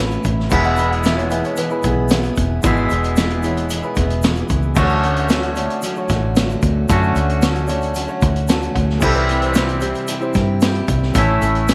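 Light reverb and a small-room ambience give this folk rock and heartland rock excerpt a close, open-road feel, with a jangly lift in a straight 4/4. A twangy, clean electric guitar carries the riff over a foam-muted fingered electric bass and a vintage drum kit sitting up front, its dark cymbals, medium-tuned snare and punchy kick heard through a rolled-off top. Behind them, a jumbo steel-string acoustic guitar with fresh strings adds picked, full-bodied accompaniment, and a woody upright piano supplies short-sustain backing, while a grainy tube shaker stays close and dry in the background. The upright piano also plays a second line and drops in a brief fill from 8.2 to 9.0 seconds. The harmony moves from Aadd9 through E and Dmaj7 to C before returning to A.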